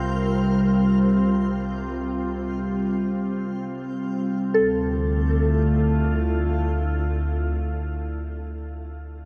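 Ambient music in free time and D minor, spacious and serene, drawn from a longer piece and set in a huge, wet reverb with a long tail. A glassy FM pad sits up front with sustained chords that bloom slowly and linger, its ensemble chorus giving it an ethereal sheen until it fades out around 8.2 seconds. Above it, a soft synth bell plays pure, gentle arpeggios with a fast attack and decaying notes, softened by chorus and a diffuse ambient delay that carries on to 9.3 seconds. Beneath them, a deep, rumbling drone of triangle and sawtooth tones holds an ominous bass that stops at 7.5 seconds, while a reversed, detuned granular texture swells dreamily in the background, washed in shimmer reverb, through the first 4.6 seconds. The harmony moves from a C7sus4 chord at the start to D minor at 4.5 seconds.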